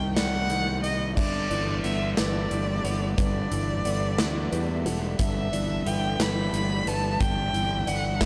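Cinematic and hopeful, this post-rock excerpt in 6/8 features an expressive, up-front bowed violin melody with vibrato, portamento and digital delay, set over a very quiet, biting chamber string section holding sustained chords, mellow felt-muted upright piano and clean hollow-body electric guitar arpeggios (both with delay) in the background, an overdriven fuzz fingered bass, and a huge arena drum kit with a punchy kick and bright cymbals that enters at 0.2 s, as the harmony moves from Cmadd9 to G6 at 1.2 s inside a light small-room reverb.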